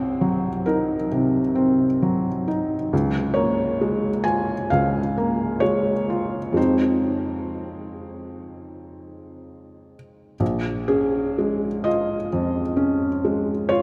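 Neoclassical minimalist piano in Bb minor, intimate and wistful, moving in a rubato 4/4 at roughly 60-68 BPM across this short excerpt cut from a longer piece. A felt-muted upright piano plays alone throughout, its soft, mellow tone sitting up front with audible action noise and short sustain, ranging from Bb1 to Ab5 over chords that pass from Cm7b5 through Bbm7/Db and Fm7 to Bbm7 at 10.4 seconds. The sound is bathed in a wet cathedral reverb with a six-second tail, placing the close, natural piano inside a vast, echoing space.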